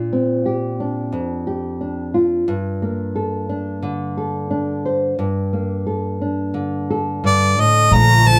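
A close, detailed recording with light reverb opens this hopeful, intimate folk excerpt at 89 BPM in 4/4, where an up-front, dark nylon-string guitar plays thumb-plucked classical accompaniment alone over Bbadd9 moving to Gmadd9. At 7.3 seconds a clear harmonica takes the solo melody, with light vibrato, scooped notes and a smooth top. At 7.9 seconds a woody pizzicato upright bass joins on the bass line, while a soft-attack chamber string section, bowed sul tasto in the background, enters with sustained chords.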